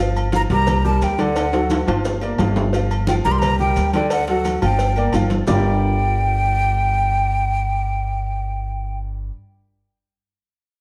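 A straight, driving 4/4 salsa groove at 175 BPM in G minor is set by ringing agogo bells and timbales, thick-skinned congas, tight high-tuned cowbell and bongos and grainy maracas, with a drum fill from 1.4 to 2.7 seconds before the percussion drops out at 5.6 seconds, while a woody pizzicato upright bass sits up front beside a clear grand piano moving through Gm7, C5 and D, and a breathy, hollow jazz flute carries the danceable melody with vibrato and a soft attack in a dark production with large studio reverb.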